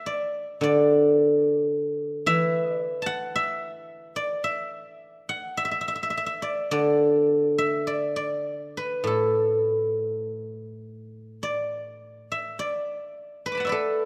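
A solo guzheng, plucked with fingerpicks and sitting up front, rings out with a silvery, warm voice across a span from A2 to D6 in this pastoral, elegant piece of Chinese traditional music in the D gong mode, moving in a free rubato around 50-56 BPM in 4/4 and wrapped in a moderate concert hall reverb over a 14.1-second excerpt cut from a longer work.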